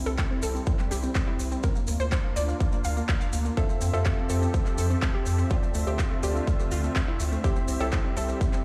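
A lush, detuned supersaw pad and a round, deep analog bass open this hopeful, euphoric progressive house excerpt, cut from a longer piece, with the pad's sustained chords moving through a filter sweep and pumping to the sidechain. A bright, chorused analog pluck quickly joins with delayed arpeggios, while grainy, mellow maracas add a quiet acoustic shimmer. At 0.2 seconds a punchy, up-front electronic kick arrives alongside a big-room dance kit of handclaps and crisp hi-hats, both tape-tinged and re-recorded in a large room, and the hats also pump with the sidechain. Very quiet congas flicker in only briefly, and from 3.6 seconds a dark, mellow baby grand piano adds delayed stabs over a progression that runs from C through Bb/D, Fmaj7 and Dm7 before returning to C. The overall sound is dry, heard through a big system in a bare stone room.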